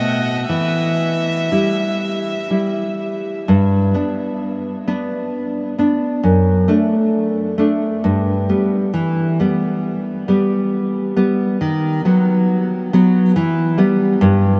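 Soaked in a huge, dreamy ambient reverb, this melancholic, elegiac fragment of a romantic duo for violin and classical guitar drifts in a rubato 3/4 at around 58-71 BPM, moving from E minor to G major at 3.5 s. A single bowed violin enters together with the guitar at the very start, offering a rich, smooth line full of vibrato and touched by analog delay, but it is heard only until 2.5 s. The full-bodied, fingerpicked nylon-string guitar sits up front with a lush chorus and carries the accompaniment through the whole passage to 14.6 s, over chords that pass from Em through G and D/F# to B/D# before settling back on Em.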